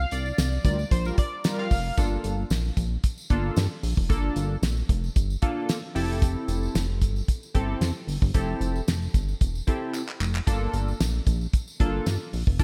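Early-eighties boogie funk at 113 BPM in G dorian, this danceable, funky excerpt opens on a band accent and a short analog polysynth solo over C9sus4 before settling into a Gm9 to Fmaj9 groove, with a drum fill at 9.9 seconds. A dry, damped 70s kit with a fat snare, tight kick, hi-hat and handclaps sits up front beside a glossy, ring-modulated synth bass with a plucky filter, while a chorused polysynth with a sub octave and filter sweep supplies retro chords and a distant, jingly tambourine shimmers behind. Round, brassy synth brass with vibrato adds a brief second line between 0.6 and 1.7 seconds, all framed by light reverb and small room ambience.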